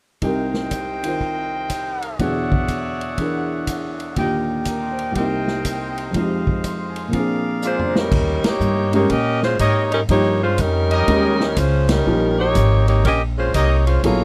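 Brassy and swinging, this short big band jazz passage moves at 122 BPM in 4/4 with a firm swing feel, centered in Eb mixolydian. From the start a baby grand piano comps up front with a natural tone, while a distant, roomy trumpet section punches out bright stabs with light vibrato and a big-band drum kit drives along with a punchy kick, medium-tuned snare, hi-hat, ride, crash and toms. A drum fill at 7.6 seconds ushers in the saxophone section, which takes the melody warmly and up front with jazz vibrato. The pizzicato upright bass arrives at 8.1 seconds, woody and growly on steel strings, as the harmony shifts to Eb7 and the band hits accents along the way. The sound is dry and close, with a 1970s studio character, and the passage is cut from a longer piece.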